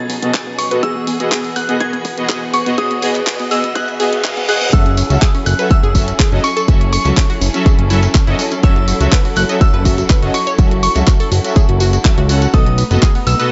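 Light reverb and a digital ambience give this progressive house excerpt a clean, airy sheen, with a bittersweet, dreamy mood over a steady, straight pulse. A crystalline FM synth bell carries the melody with chorus and digital delay, shadowed by a very quiet, gentle pluck, while lush bowed strings hold sustained chords in the background. A rounded analog pluck spins arpeggios and a smooth, detuned supersaw plays phaser-tinged stabs with a touch of 12-bit grit, both moving under filter sweeps during the build-up as a faint riser and a reverse cymbal at 3.8 seconds lead into the drop. At 4.7 seconds the drop lands with a thick, saturated, wave-folded analog bass and a jingly tambourine joining the punchy, up-front kick and the house kit's handclaps and hi-hats. Sidechain pumping makes the strings, arpeggios, stabs, bass and hats breathe against the kick, as the chords move from B7 through Eadd9 to a long F#m7 before returning to B7.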